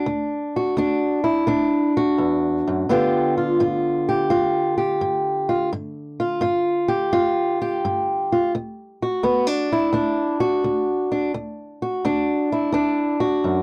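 Rollicking and soulful, this short blues passage from a longer piece moves at 85 BPM in 4/4 with a swung eighth-note feel. A single fingerpicked, ladder-braced acoustic guitar carries everything as a solo from 0.0 to 13.6 seconds, ranging from D2 up to G4. The instrument sounds dark, woody and boxy, with the character of old strings, and sits up front in the mix. The harmony rests on D, shifts to G7 at 2.9 seconds, and returns to D at 8.5 seconds. It is captured as a dry, close recording in a 1970s studio style with light reverb and tuned to A4 = 441 Hz.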